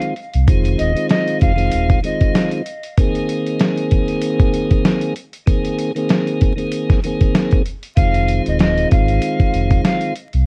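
A breathy jazz flute with a crisp, chiffy attack and vibrato, a piping tonewheel organ turning through a slow rotary speaker, and a gritty, compressed sampler-style drum kit with a thumpy kick all open this moody, reflective boom-bap hip-hop excerpt. A deep sine sub bass with an octave and transformer saturation drops out at 2.0 seconds, and the flute falls silent after 2.5 seconds while the organ and swung drums carry the Fm7 to Abadd9 changes. Both flute and bass return at 8.0 seconds, all under light reverb and a worn, warbling cassette tone with vinyl crackle and pitch drift.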